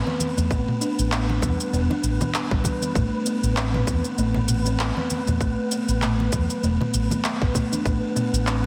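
A lightly swung 98 BPM groove in 4/4 drives this mystical, earthy organic downtempo excerpt, where a tight, tape-colored electronic kick and a small-room drum kit of handclaps, shaker and toms sit alongside bright background congas, a round, dark fretless bass pumps up front, a woody, buzzing kalimba rings out arpeggios through tape echo, and a breathy, wind-like tuned noise texture drifts behind over chords moving from Asus2 through G/A and B7(no3)/A to Amadd9, all within a heavily compressed, radio-like mix on a moderate scoring-stage reverb.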